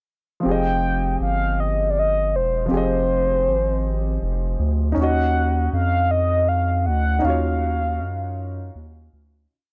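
A mellow, horn-like synth lead carries this short, sultry R&B piece from 0.5 seconds, its soft-attack sawtooth voice colored by chorus and vibrato as it repeats yearning hook phrases up front. Beneath it, a round analog bass with a deep, sine-like darkness follows a slow, sliding line dotted with chromatic approach notes. A concert grand piano holds spread-voiced chords, its audible action noise lending an intimate, natural character. The music moves at a slow 53 BPM in straight 6/8, shifting from Fm9 to Ebm9 at 5.0 seconds. The dry, close 1970s-style studio sound keeps the parts present and unadorned before a fade-out begins at 7.2 seconds.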